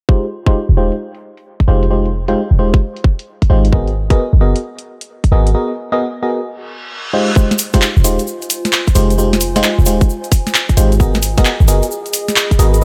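Skippy and bouncy, this two-step UK garage cut rides a tight, layered electronic kick and a punchy analog drum machine of handclaps, filtered hi-hats and snare, with a mellow short 808-style bass whose filter sweeps across the whole opening section, which drops into a break at 5.5 seconds. Glassy, bell-like FM electric piano stabs drift through chorus, phaser and dub echo over Fm9 and Abm9 chords, while a reverse cymbal leads into the second half at 7.4 seconds, where a grainy egg shaker joins in the background. From 8.0 seconds a warbling, nostalgic lo-fi pad with sidechain pumping adds a dark, vintage haze under light digital ambience.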